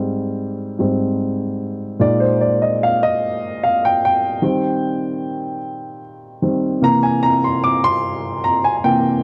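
Dark, lightly reverberant production frames a mellow, woody upright piano playing solo and up front in this jubilant, hopeful gospel excerpt, moving at 50 BPM in 6/8 through Abmaj7, Bb7sus4, Eb6 and C7 across a span from Ab2 to D6 in a brief 9.2-second cut from a longer piece.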